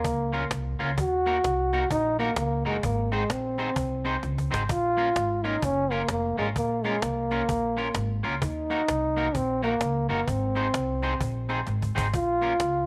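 A dark trombone leads this short ska fragment, cut from a longer piece, playing the solo melody up front with light vibrato, scooped notes, a punchy attack and a smooth top in a pop style. The mood is energetic and mischievous, moving at 129 BPM in 4/4 with a swung eighth-note feel in Bb minor, cycling through Bbm, Ebm and Ab. Beneath it, a pizzicato upright bass with steel strings gives a woody, warm low end. A cajon with snares, struck with hard hands, sits close, dry and snappy near the front, adding short fills around 4.2 and 11.7 seconds. An electric guitar on the edge of break-up enters at 0.3 seconds with picked, twangy accompaniment that carries a slightly broken-up warmth. The trombone, bass, cajon and guitar all sit in a light studio reverb.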